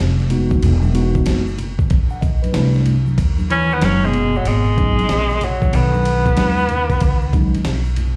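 Warm and smooth, this jazz-hop cut from a longer piece pairs a woody pizzicato upright bass with a gritty, compressed sampler-style drum kit whose thumpy kick and fat snare sit up front, adds faint, distant tube shaker and congas and a mellow tine electric piano with slapback echo, and at 3.5 s brings in a breathy, vintage-toned tenor saxophone lead with vibrato and its own slapback echo, alongside a dark, picked clean electric guitar in the background with harmonic tremolo and analog delay, the whole band heard as a live gig through the venue's PA with club reverb and vinyl crackle.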